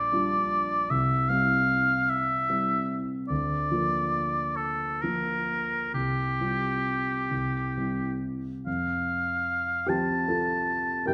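Heard in a moderate recital-hall reverb, this brief fragment of a romantic classical duo has a lyrical, tender mood, unfolding in a slow 6/8 with expressive rubato. A clear oboe sings the melody up front with light vibrato in a classical style, while a dark, mellow concert grand supplies the accompaniment with deep bass beneath it. Both play throughout, and at 8.7 seconds the music settles into a new section that carries on until the end.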